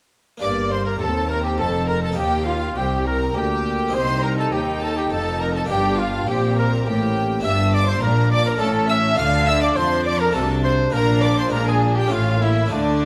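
Moving in a straight 3/4 at 102 BPM, this stormy, driving baroque-style concerto movement starts in G minor and turns toward D minor at 7.5 s, with a solo trumpet of classical warmth carrying the melody beside a focused, vibrato-rich violin section high above. A smooth second violin line and a distant viola section sit in the background, an airy, bright Flemish-style harpsichord plucks accompaniment behind them, and cellos and a soft-attack double bass section anchor the bass. All parts play from 0.4 s to 13.1 s in a reverberant recital hall, a fragment of a longer piece.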